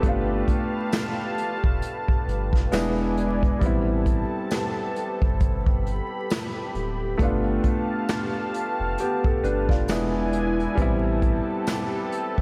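A 67 BPM swung groove of brushed hi-hat, punchy kick and dark, medium-tuned snare sets a melancholic, nostalgic lo-fi hip hop mood in A minor, where a soft, felt-muted upright piano with audible action noise and cassette-tape haze plays G9, E7 and Am9 chords over a round sine sub bass and a detuned sawtooth pad bathed in lush chorus, while a bright, jingly tambourine sits in the background from 0.9 to 11.9 seconds, the whole dreamy mix soaked in hall reverb and vinyl crackle.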